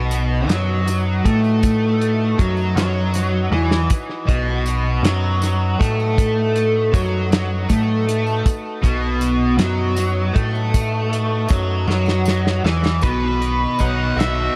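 A double-tracked, overdriven electric guitar riff sits up front in this hazy, kaleidoscopic psychedelic rock excerpt, its dark tone coloured by flanger and tape echo. The piece moves at a slow 53 BPM in 6/8 with a straight feel, centred on B mixolydian. Beneath it, a round, up-front picked electric bass holds the low end. A damped 70s drum kit with a tight kick, a medium-tuned snare and a rolled-off top plays with tape echo, adding fills at 3.5 seconds and just before the change at 13.0 seconds. In the background, a vintage, buzzy combo organ sustains chords through spring reverb, and a jingly, close tambourine adds bright shimmer. At 13.0 seconds, a fuzzed octave lead guitar enters with a distorted, echo-soaked melody, all within a dense, echo-heavy mix.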